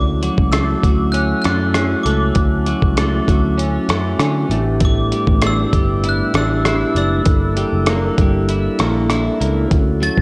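Opening on bell-like glockenspiel melody over a mellow, flute-like tonewheel organ through a slow rotary speaker and a round, foam-muted electric bass, this hazy, sunny bedroom-pop excerpt in D major at 98 BPM soon adds a chorus-drenched twelve-string electric guitar with warbly pitch drift and a gritty, tape-warm sampler-style kit of thumpy kick, hi-hat and rim click at 0.2 seconds, all moving through Dmaj7, A7sus4 and Gm6 in a dreamy mix soaked in plate reverb.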